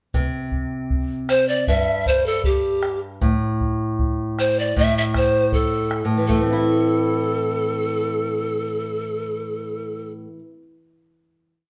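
Festive and earthy, this short Andean folk piece in 2/4 opens with a fingerpicked nylon-string guitar laying down bass notes and chord figures, its fresh strings catching the odd finger squeak, while a round, close bombo repeats a pattern until 6.6 seconds. A breathy bamboo pan flute enters at 1.3 seconds up front with a motif-based melody in song-like phrases, its tongued notes carrying chiff and vibrato. The band plays live in a stone room whose wet reverb surrounds them, and the piece settles on a final A minor chord before the guitar rings out to close at 10.7 seconds.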